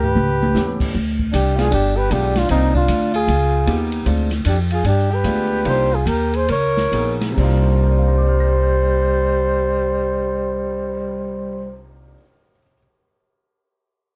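A thumpy, woody upright bass sits up front in this cool, smoky piece of small-group swing and bop in C minor at 131-154 BPM, as a mellow flugelhorn with light vibrato carries the melody over a breathy, whispered alto saxophone second line, while an open jazz drum kit with dark cymbals and a boomy kick opens with a fill, a concert grand piano with deep bass enters at 0.5 s, and the tempo slows from 4.1 to 7.4 s under light reverb.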